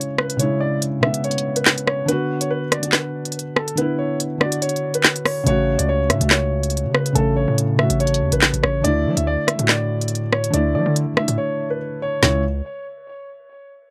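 A lightly reverberant, up-front mix carries this menacing, dark half-time drill excerpt at 142 BPM in C# phrygian, where a mellow grand piano with long sustain and tape echo sings the melody over a felt-muted upright piano with audible action noise, an electronic drum kit of woody snare, crisp hats, handclaps and rim clicks, and a punchy, heavy 808-style bass with a noise layer that enters at 5.5 seconds as the chords move from C#m through Bm, A6 and Dsus2.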